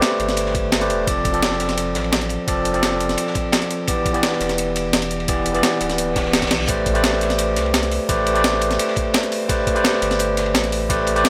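An overdriven tine electric piano sits up front in this dreamy, rolling liquid drum and bass excerpt, its bright, barky tone coming through a combo amp, shaped by a low-pass filter sweep and trailed by tape echo. It carries the chords Am11, F6 and Em7 before returning to Am11. Beneath it, a gritty, compressed sampler-style breakbeat with a high-tuned snare and hi-hat sits forward among the drums. A second, crunchier acoustic kit, recorded in a studio room, adds dark, smooth ride cymbal and another snare with a saturated, rolled-off top. A thumpy electronic kick and a deep, round sine sub bass with fast attack and sustained notes fill out the low end. An electronic reverse cymbal sounds in the background from 6.1 seconds, and a drum fill arrives at 6.5 seconds, while light reverb with studio ambience surrounds the mix.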